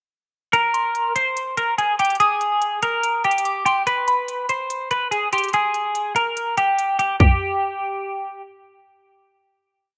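Melancholic and eerie, this short trap hip hop piece loops a bright, twangy twelve-string electric guitar melody through lush chorus and a low-pass filter over an up-front half-time trap kit of hard-clipped kick, crisp hats with fast rolls and toms, while a pure, gentle FM synth bell with chorus, phaser and delay adds a sparse counter-melody in the background, set in a rough home demo mix with moderate plate reverb, until the drums drop out at 7.3 s and the guitar carries on alone to 8.4 s.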